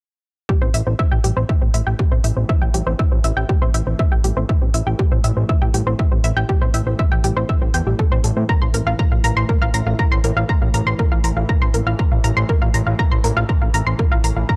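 A dry, gritty hardware recording with a cassette-tape character carries this driving, dramatic cut of melodic techno, taken from a longer piece and moving at 120 BPM in a straight 4/4 in A phrygian. A heavy, layered electronic kick drum sits up front from 0.5 seconds, re-recorded in a small room with a tape-warm tone, while smooth electronic hi-hats join just after. A fat analog bass, thick, nasal and saturated from detuned sawtooth and square waves, holds the low end up front with sidechain pumping and an evolving, sustained body. Above it, a round, bright analog pluck plays arpeggios with a sub octave, chorus, vintage 12-bit sampler grit, analog delay and sidechain pumping, and a filter sweep runs over its sound throughout. A very quiet analog drone enters at 1.9 seconds, its detuned pulse-width-modulated tone warbling and vintage under chorus, while the harmony moves from Am7 to Bbsus2/A at 8.5 seconds.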